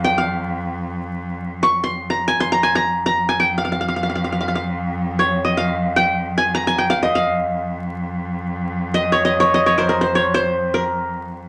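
A short, wet studio reverb and a layer of vinyl crackle frame this fragment of makam ensemble music, cut from a longer piece. Its mood is soulful and full of longing. Up front, an acoustic qanun carries the melody from 0.0 to 11.5 seconds, plucked with fingerpicks so its triple strings ring bright-edged and warm between Bb4 and Db6. Beneath it, a single bowed cello sits lower in the mix, holding a drone on F2 for the same span. The cello's tone is nasal, focused and boxy, with a vibrato that gives the sustained note a quiet ache against the qanun's glittering line.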